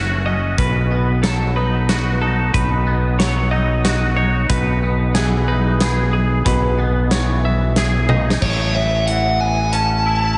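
A dreamy mix soaked in lush hall reverb, with a softened top end, frames this short, soaring and hopeful post-rock passage in 3/4 at 92 BPM, set in A lydian. A clean, twangy electric guitar and a bright twelve-string weave arpeggios through chorus and analog delay, over a growling, overdriven fingered bass up front and a big, punchy acoustic rock kit that enters at 0.6 seconds and plays a fill at 8.1 seconds, as the chords move from F#m through B and Emaj7/B to Aadd9. At 8.4 seconds a dark, distorted fuzz lead guitar with analog delay steps forward to carry the melody in its upper register.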